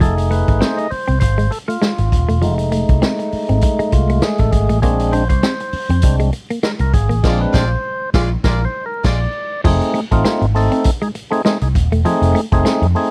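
Funk with a funky, strutting feel, this short section from a longer piece rides a swung sixteenth-note groove over F7#9 and Bb9 chords. A raw garage drum kit sits up front with a punchy kick, medium-tuned snare, hi-hat and crash, its sound gritty and saturated in a bright stone room with a rolled-off top. Beneath it, a picked electric bass pushed through an envelope filter sounds amped and up front, while a dark, scooped semi-hollow electric guitar plays a clean, compressed riff with a warbly pitch drift. A fat, lightly overdriven tonewheel organ carries a solo of percussive stabs through the opening 9.6 seconds, and a punchy horn section with light vibrato adds a second line from 7.2 to 9.2 seconds as the band hits accents. The dry, close 1970s-style studio sound carries a layer of vinyl crackle.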